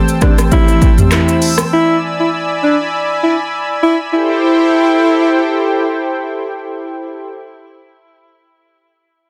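Sultry and mellow, this short afrobeats cut in A minor at 100 BPM with a lightly swung sixteenth feel rests on a detuned sawtooth analog pad with chorus holding sustained Am7 and E7 chords, while a punchy electronic deep house kit of kick, smooth hats, handclaps, rim click, shaker and toms plays only until 1.7 seconds, a woody, dry folk marimba with soft mallets adds brief accompaniment, and a breathy alto saxophone with vibrato and delay carries the melody up front until 5.9 seconds, inside a dense, heavily limited modern master.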